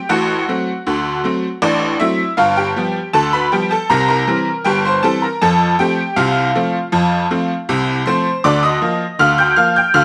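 Cheerful and lively, this excerpt of ragtime piano moves at 79 BPM in 2/4 with a straight feel in F major. A solo tack piano carries the whole 10 seconds, ranging from G1 up to G6 and sitting up front in the mix. Its tone is metallic and jangly, percussive and bright, with a vintage character. The harmony travels from D7 through G7 and C7 before settling on F at 5.4 seconds, then moves to Bb/D at 8.4 seconds. A moderate stone room reverb gives the instrument a live, in-the-room presence.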